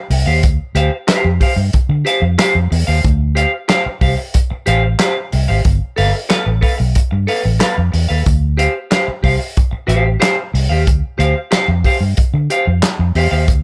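Funk with a funky, hypnotic mood, this short fragment cut from a longer piece rides a straight 4/4 groove from start to finish. A warm soul drum kit sets the pulse with a tight kick, a fat snare, hi-hat and handclaps, its rolled-off top and pumping room sound giving the beat a thick, close feel. Underneath, a vintage muted fingered electric bass sits dark and round, its foam-muted, amped tone landing punchy and up front in the low register. A clean electric guitar plays accompaniment in a higher range, its bright, twangy picked tone coated in lush chorus. The harmony moves from Dm11 to G9 at 5.7 seconds and returns to Dm11 at 8.3 seconds, and the dry, close sound keeps all three parts present and immediate.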